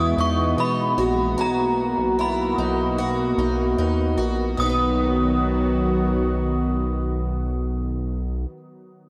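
A straight 4/4 pulse carries this blissful, floating dream pop excerpt, anchored by a glossy, up-front synth bass with a plucky pulse-and-sawtooth bite and a warm analog pad holding detuned, slow-blooming sustained chords. Over them a picked twelve-string acoustic guitar shimmers through octave-doubled arpeggios, finger squeaks and all, beneath a chiming, inharmonic FM synth melody washed in ensemble chorus and analog delay, while a very quiet, dry glockenspiel played with soft plastic mallets adds a faint bell-like ring from 1.4 s. The harmony moves from Emaj7 to Bmaj7, settling on B at 4.6 s, and the mix is soaked in a long cathedral reverb.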